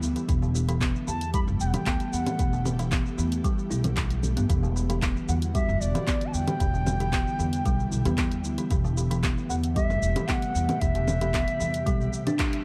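A bright, reedy bansuri with vibrato and tape echo carries the melody from 1.1 seconds over hollow, thumbnail-plucked kalimba arpeggios with delay, a woody, growly pizzicato upright bass and a deep electronic kick with congas, handclaps, hi-hat and shaker, while an ethereal, detuned pad with shimmer reverb and sidechain pumping sustains chords in the background of this hypnotic organic downtempo cut at 114 BPM, moving from A5/E through Em9 to Am7/E before a band accent at 12.4 seconds.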